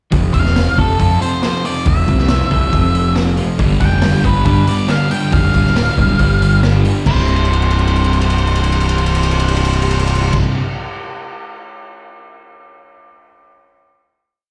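A straight 4/4 pulse at 138 BPM drives this cathartic, restless quiet-loud alternative rock piece in C major, where a boomy, gritty, mid-forward garage drum kit and a bright, punchy overdriven bass up front sit beneath a dark octave-fuzz lead guitar playing hook phrases with slapback echo. A compressed fuzz guitar drives eighth-note power chords in the background, a very quiet clean twelve-string electric guitar picks arpeggios, and a thick fuzz guitar adds more power chords from 3.6 seconds. The band is heard through a club PA as the pre-chorus gives way to a final chord at 7.1 seconds, over which a drum fill rolls from 7.3 seconds.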